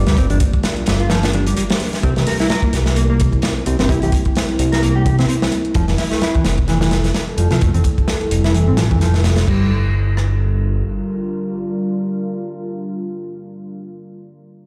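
Swaggering and gritty, this 129 BPM breakbeat excerpt in G dorian rides a saturated, up-front breakbeat kit with dark cymbals and a tight kick, a fat, detuned analog sawtooth bass, a very quiet electronic hi-hat and faint hard-hand congas, while a clean, fingered electric guitar riff drenched in lush chorus and digital delay moves through a filter sweep until 9.5 s over a deep, moody ambient pad with sidechain pumping that holds its sustained chords through Gm7, C7 and Fmaj9 and carries on to 14.0 s, outlasting the other parts, all heard as if played on a big sound system in a bare room.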